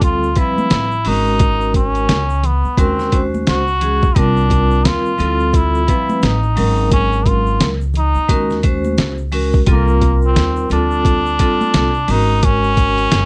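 Jazz-hop with a cool, mellow mood and a swung sixteenth-note feel, this piece is carried by an up-front, buzzy trombone in a metal mute playing a smooth solo melody over bright, ringing vibraphone chords with a slow motor vibrato, moving through Dm11, Ab9sus4, Ebm7 and Cm11. Woody pizzicato upright bass sits beneath a gritty, compressed, pitched-down sampler-style drum kit with a thumpy kick and medium-tuned snare, while egg shaker and congas stay in the background. The sound is dry and close, like a 1970s studio recording, in a short section cut from a longer piece.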